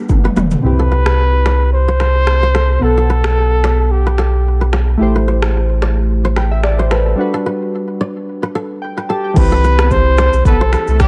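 A small-room sound with gritty vintage-sampler texture on the electronic drum kit frames this sunny, romantic afrobeats excerpt, where a deep kick, rim clicks, finger snaps, shaker, toms and crash sit under a round, up-front sine sub bass, chorused analog keys with a filter sweep, a crisp fingerpicked kora ringing through delay and a brief hit of bright, high-tuned congas, while a dark, whispered trumpet with vibrato and scooped notes carries the delayed melody from 0.6 s, returns at 9.1 s and is joined at 9.8 s by a smooth horn section in the background.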